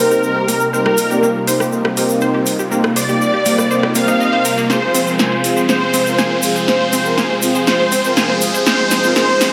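A straight 4/4 pulse at 121 BPM drives this progressive house build-up in C minor, tuned slightly flat at A4 = 437 Hz, with an emotional yet driving mood. An egg shaker ticks grainy and acoustic in the background from 0.1 s, and a deep house drum kit joins at 0.5 s with a punchy snare, metallic hats and rim clicks, all roughened by overdrive. A riser creeps in behind at 1.2 s, and a drum fill runs from 4.7 s, where the harmony moves from Cm7 to Fm over C. Up front, a thick, bold unison lead carries the melody with vibrato, a wave-folded edge, ensemble chorus and tape echo, while a dark, woody symphonic violin section bows a second line in the same register alongside it through analog delay. A lush, airy pad holds sustained chords with chorus, a detuned sawtooth pluck ripples arpeggios in the background, and a smooth soft-attack supersaw places stabs through cassette-tape colour and a low-pass filter, with filter sweeps moving across the supersaw and pad. 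The whole mix sits soaked in plate reverb for a dreamy, high-passed sheen, and this passage is cut from a longer piece.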